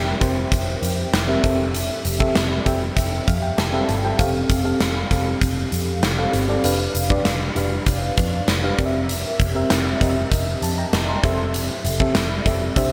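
An FM electric piano layered with a soft pad opens this nostalgic, glossy 1980s-style pop excerpt together with a dark, foam-muted picked electric bass. A huge arena drum kit joins at 0.2 s with hi-hat, a punchy kick and a medium-tuned snare, placed up front and treated with gated reverb that gives it a pumping, hall-sized sound. At a steady 98 BPM in straight 4/4, the dreamy, warbling electric piano carries the harmony with a detuned, chorused shimmer, and it plays a fill from 2.4 to 4.2 s. The chords move from C7/F through Am7/F, Fadd9 and G7/F before returning to C7/F and Am7/F, while the round, amped bass holds the low end underneath. A lush hall reverb of about 1.7 s and a small room ambience frame the bright digital production.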